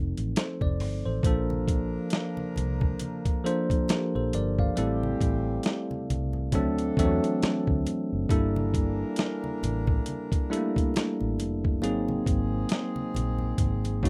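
An up-front, bell-like tine electric piano in plate reverb and a dark, round, foam-muted fingered electric bass open this late-night, soulful neo-soul R&B excerpt. At 0.2 s they are joined by a gently swung sixteenth-note groove from a gritty, tape-warmed sampler-style drum kit with a thumpy kick. Very quiet low-tuned congas follow from 0.6 s, and a mellow horn section adds punchy, octave-doubled stabs with light vibrato from 1.2 s, all in a rough home-demo mix.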